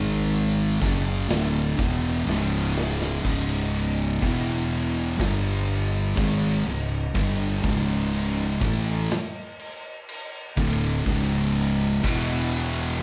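Stoner and doom metal with a sludgy, ominous mood, this short excerpt has two thick, distorted fuzz guitars picking a heavy riff, one up front and one in the background, over a growly, overdriven fingered bass and an acoustic drum kit with a punchy kick, medium-tuned snare and bright cymbals, all played live in one large studio room, with a drum fill from 2.3 to 3.2 seconds before the riff shifts to a new section.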